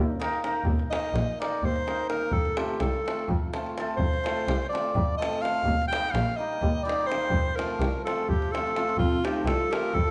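A mellow alto saxophone opens this short excerpt of wild, virtuosic Balkan wedding-band music at 0.0 seconds, playing up front with vibrato in a classical style over an earthy, bowed double bass that sounds clear yet distant. Moments later a bright, shimmering hammered dulcimer adds ringing acoustic accompaniment, while a tight, vintage-toned davul drives the straight 7/8 metre. The saxophone carries a solo through the first section as the harmony alternates between Eb and F. At 9.0 seconds a new section begins, and a dark clarinet with a smooth top joins in the background as a second line, also in a classical manner. The ensemble sits in the wet reverb of a recital hall, with a soft, rounded top end to the overall sound.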